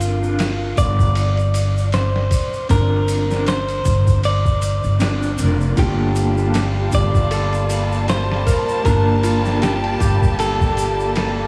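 A woody, pizzicato upright bass sits up front in this cinematic, hypnotic trip hop excerpt in G minor at 78 BPM with a swung 16th feel, under a pitched-down, thumpy sampler-style drum kit with gritty 12-bit texture, a distant tube shaker, a compressed clean electric guitar melody with tape echo, and a dark, fingered electric guitar accompaniment with tremolo, sampler grit and tape echo, before a lush, vibrato-rich violin section and a ringing harp with analog delay arrive at 5.8 s as the harmony moves from Bbadd9/G to Gm9, joined at 7.4 s by a very quiet, tense, detuned drone, all bathed in a dreamy, reverb-soaked mix.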